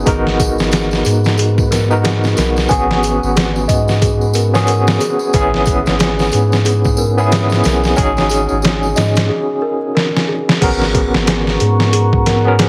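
A swung, gritty sampler-style drum kit with a thumpy kick, pitched-down tone and overdrive drives this hypnotic, smoky trip hop fragment, joined by a quiet saturated tambourine, a round dub sub bass, a barky overdriven tine electric piano with tremolo and tape echo, a delicate, slightly out-of-tune celesta arpeggiating in the background, and a faint breathy wind-like texture, until a break at 9.3 seconds and a drum fill lead to a moody analog pad with chorus, phaser and 12-bit grit entering at 11.2 seconds, in a heavily compressed, radio-like mix with vinyl crackle.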